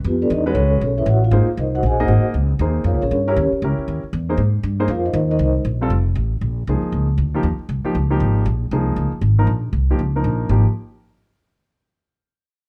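A brisk, lightly swung 4/4 at 235 BPM carries this relaxed, sophisticated small-group jazz fragment in Ab major, with a woody, growly pizzicato upright bass anchoring the low end from the start. The vibraphone, played with soft mallets, carries the melody with a mellow, ringing tone, fast motor vibrato and a plate reverb until 5.5 seconds, while a polished, present grand piano accompanies from 0.5 seconds onward. The whole sits in a dark production with light reverb, the three instruments kept up front.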